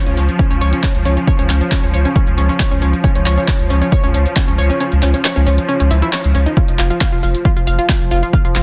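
A dense, heavily limited modern master with light digital ambience frames this intense, dark slice of driving peak-time techno at 136 BPM in a straight 4/4, cut from a longer piece. An up-front, overdriven electronic kick pounds under a thick, saturated sub bass with overdrive, a low-pass filter and sidechain pumping, while a punchy analog drum machine adds overdriven handclaps, hi-hat and shaker. A round sawtooth-and-square analog pluck riff with chorus, tube saturation and tape echo pumps over a swarming, detuned granular drone on F3, and the kick drops out from 4.8 to 6.6 seconds before an F5 chord arrives at 6.6 seconds.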